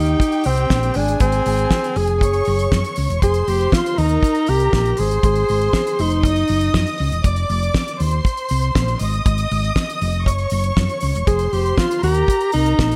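A mellow alto saxophone leads this glamorous, sultry disco passage, carrying the melody up front with vibrato, scooped notes and a forceful, jazz-style punch under a smooth top. Alongside it, a lush studio violin section supplies a bowed second line, close and even with its own gentle vibrato, while a dark, round hollow-body electric bass sits prominently, fingered and amped. A damped 70s acoustic kit joins almost at once, its fat snare, tight kick and hi-hat sounding dry yet touched by gated reverb. The saxophone drops out at 7.0 seconds, leaving strings, bass and drums to carry the harmony before it returns at 11.3 seconds. The chords circle through Eb6, Ab, Gb and F shapes in a light, reverberant studio ambience, and the passage is cut from a longer piece.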